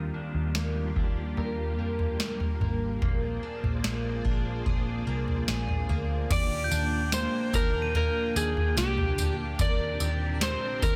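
A slow, straight 4/4 pulse at 73 BPM is set by a booming analog drum machine with a deep kick, crisp snare, tambourine, toms and crash, entering at 0.5 seconds beneath a foam-muted, round electric bass in this melancholic, ethereal dream pop excerpt moving from Ebmaj7 to Bb7, back to Ebmaj7 and on to Cm7. A sawtooth cello string machine with slow attack and ensemble chorus holds mellow sustained chords while a shimmering, octave-doubled twelve-string acoustic guitar picks arpeggios through lush chorus and tape echo, both under a low-pass filter, with a filter sweep running through the first 6.3 seconds. At 6.3 seconds an up-front, slightly broken-up slide guitar takes the melody with tape echo, joined briefly by a bell-like glockenspiel with soft plastic mallets in the background, all set in digital ambience and a dense, heavily limited master.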